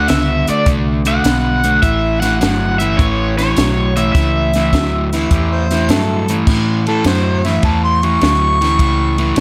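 A laid-back, rollicking electric blues shuffle in A mixolydian at 103 BPM opens on a cranked stack guitar carrying an overdriven melody through spring and plate reverb, over an up-front, hollow-body semi-hollow guitar riff and a round, foam-muted bass. A compact cocktail kit joins at 0.1 s with dry, dark cymbals, a high-tuned snare and a punchy kick, before a mellow, distant harmonica with light vibrato and scooped notes enters at 5.1 s and takes a roomy solo from 6.5 s, as the chords move from D7 and A7 to A in this short cut from a longer piece.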